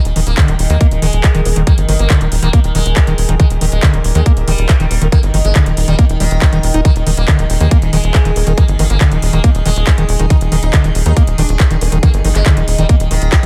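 Psychedelic and alien, this excerpt of psychedelic trance rides a tight, up-front electronic kick and a punchy, driving sequencer bass with tube saturation, while a buzzing, shimmering sitar melody treated with phaser, 12-bit grit and tape echo floats over an evolving, detuned wavetable pad, a squelchy overdriven acid bass riff with delay, a garage kit of woody snare, metallic hats and handclaps, and brief nasal bursts of a vowel-sweep wobble bass first heard at 1.5 seconds.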